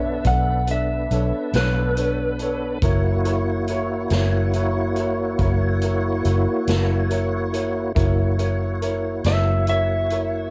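A dry, home-made cassette recording captures a brief cut from a mournful, soulful slow blues at 47 BPM in 12/8, where a slightly broken-up, compressed electric slide guitar carries the melody over sustained chords from an up-front, lightly overdriven tonewheel organ with slow rotary speaker, chorus vibrato and key click, a woody upright piano with long sustain accompanying, a dark, round, foam-muted fingered electric bass placed up front, and a distant, roomy swinging big-band drum kit with punchy kick and medium-tuned snare, as the harmony moves from Bm9 to F#7 at 2.8 seconds.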